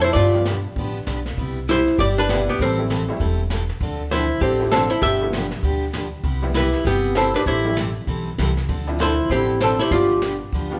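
A bouncing swung 4/4 groove drives this playful, down-home western swing clip, with brushes on a punchy-kicked kit and a woody pizzicato upright bass underneath. A dark, clean hollow-body electric archtop carries the melody up front, while a bright dreadnought acoustic guitar with finger squeak and a jangly, detuned honky-tonk upright piano fill in the harmony, the band playing live in one room with moderate studio reverb. At 6.6 seconds a raspy, growling clarinet with scooped notes slips in as a distant second line in the background.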